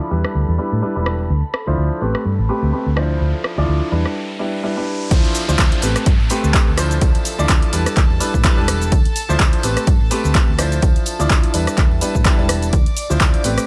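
A small-room, filtered disco house excerpt at 126 BPM in D dorian, sensual and groovy with a light 16th-note swing, where a clear, polished baby grand piano colored by phaser, 12-bit sampler grit and sidechain pumping shares the Em7–Dm9–Am9 cycle with floating, soft-attack strings in the background, a dark, round hollow-body electric bass, a tape-warm analog drum machine of handclaps, hi-hat, rim click and shaker, and a distant, very quiet tambourine. A filter sweep, a riser and a break lead to the drop at 5.1 seconds, where a punchy, up-front electronic kick enters and a downlifter trails off by 8.9 seconds.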